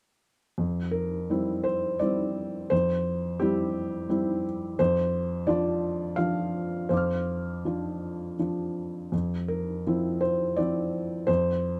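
Neoclassical minimalist piano in 3/4, moving at roughly 80-88 BPM with a rubato feel and a tender, peaceful mood. This excerpt is cut from a longer piece and features a single felt-muted upright piano playing solo from 0.6 to 11.8 seconds, spanning F2 to F6. The piano sits up front with an intimate, mellow, vintage character, its thin felt giving the notes a muted, smooth softness. The harmony moves from C7/F at 0.6 seconds to Dm7/F at 4.8 seconds, settling on an Fmaj7 voicing that omits the third at 9.1 seconds. Light reverb surrounds the quiet, close sound.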